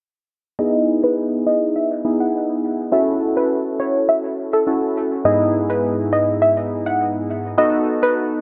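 At 0.6 s a bright, wave-folded analog pluck melody and round, detuned warm analog keys enter together, both shaped by chorus, low-pass filtering, dub echo and a filter sweep, over an Emaj7, A6, Emaj7/G# and B7 progression in this carefree, euphoric pop excerpt, which is steeped in wet spring reverb and echo, with the keys ringing on to 8.4 s.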